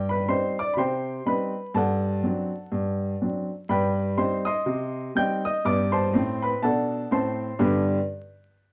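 Dark, warm production, vinyl crackle and a moderate club reverb frame this recording. It is an exuberant, playful stride piano excerpt in a jazz style, moving at 123 BPM in 4/4 with swung eighth notes and tuned slightly low to A4 = 439 Hz. A clear grand piano plays solo from 0.0 to 8.0 s. It sits up front with a smooth, vintage tone and short sustain, ranging from G2 to G6. The harmony alternates between Cm/G and D7/G before landing on G at 7.6 s, where a new section begins.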